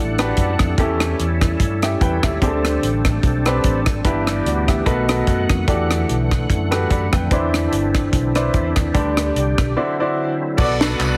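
A heavily compressed, radio-like sound with light reverb frames this soulful, reverent uptempo gospel cut in G major at 147 BPM with a swung feel, where a reedy tonewheel organ with key click and fast rotary speaker holds sustained chords over a very quiet French horn section, punchy fingered electric bass, a brilliant, woody upright piano up front, and a tight funk kit with a high-tuned snare, until a clear saxophone section with vibrato and a soft attack takes the melody at 10.6 s alongside tambourine and handclaps through harmony moving from Em11 through Cmaj9 to Bm7.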